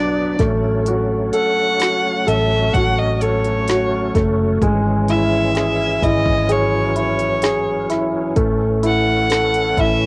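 Heartfelt and emotional, this excerpt from a slow pop ballad at 64 BPM in 4/4 sets a focused, bowed violin melody with vibrato and a grand piano up front, over reedy, lightly overdriven tonewheel organ chords with key click, chorus vibrato and a slow rotary speaker, a dark, round, foam-muted fingered electric bass, and a layered deep house drum kit of deep kick, woody snare and smooth hats entering at 0.4 seconds, with cassette-tape coloring on every part but the bass and light reverb in a home-recorded sound, moving through F#m/A, C#m/G# and A.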